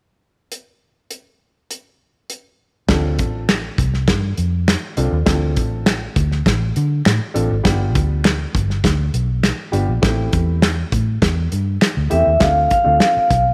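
A ringing, up-front vibraphone with fast motor vibrato arrives only at 12.1 seconds to crown this driving, passionate 1960s-style soul excerpt at 101 BPM in D dorian, where a punchy small-room drum kit opens alone at 0.5 seconds before a round, foam-muted electric bass, a woody, mellow upright piano and saturated finger snaps join over Dm7, G7 and Am7 chords in a lightly reverberant studio space.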